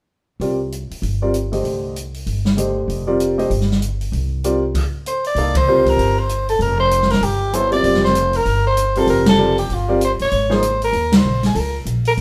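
A clear, worn grand piano, woody and thumpy upright bass, and a small-room acoustic kit with dark cymbals and a boomy kick open this cool, intense modal jazz excerpt at a swinging 194 BPM in C Dorian, before a raspy, growling soprano saxophone solo with vibrato and scooped notes enters at 5.1 s over suspended chords, with band accents punctuating the live-room sound and the piano dropping out at 10.6 s.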